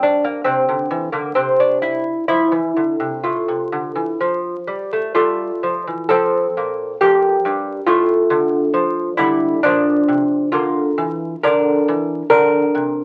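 Classical baroque-style dance for solo lute in F major, flowing and introspective, moving in a rubato 4/4 at about 62-72 BPM, the delicate fingerpicked gut and doubled strings sitting up front from 0.0 to 13.0 s, the harmony briefly stepping outside any chord at 1.4 s before settling on F, then shifting at 6.1 s into a second section that passes through F/A and Bb, all heard through a moderate club reverb and the crackle of a very old 78 rpm record in this short cut from a longer piece.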